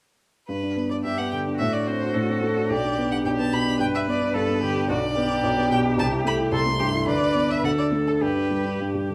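A focused, vibrato-laden violin carries the melody up front in this quick, lively and graceful classical-period piano trio movement in 2/4, played with a flexible rubato feel. A baby grand piano with an open, long-sustaining tone accompanies from 0.5 seconds, and a smooth, even cello joins with a second line at 1.0 seconds. Heard through close, detailed microphones in a moderate recital hall, the passage is cut from a longer piece and settles back onto a G chord at 8.2 seconds.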